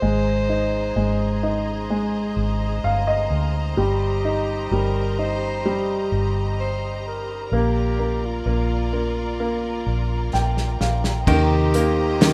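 Pop ballad excerpt in Eb major at a slow 64 BPM, hopeful and heartfelt, where a soft-attack subtone alto saxophone with plate reverb sings the melody over clear, woody upright piano accompaniment and fills, a lush bowed string section also bathed in plate reverb, and a dark, round, foam-muted electric bass, until a loose acoustic drum kit with a tight kick enters with a fill at 10.3 s and a very quiet, twangy twelve-string electric guitar adds picked arpeggios at 11.3 s, all in a rough home-demo mix with a small-room ambience.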